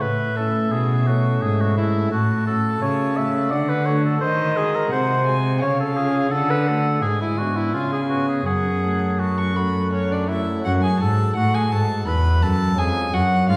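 Heard from further back in a recital hall, this recording is bathed in a wet reverb with a 1.6-second decay, cut from a longer piece. It is a radiant, flowing, baroque-style sonata movement with continuo in F# minor, moving at 85 BPM in a straight 3/4. A period-style violin with a gut-string, reedy bowed tone carries the melody high above, while a solo oboe sits up front with a light vibrato as the second line. Beneath them, a chamber organ's principal chorus gives a full accompaniment touched with chiff, and an up-front cello, rich and bowed on gut strings, supplies the bass. The harmony passes from A through D, G#7/D# and G#m7b5 to settle on F# minor at 8.5 seconds, and the music turns into a new section at 10.7 seconds before closing on C#/E#.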